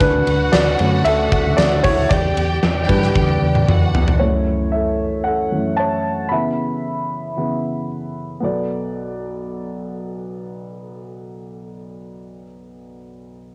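A dark, mellow baby grand piano sits up front in this dramatic, driving piano-pop excerpt, joined over the opening bars by a lush, distant violin section with expressive vibrato, a round, foam-muted electric bass and a huge arena drum kit with a fat snare, punchy kick and cassette-tape coloring that rolls into a fill at 3.2 seconds before those parts drop out at 4.2 seconds, leaving the piano to carry on alone through a home cassette sound with moderate spring reverb until 13.5 seconds.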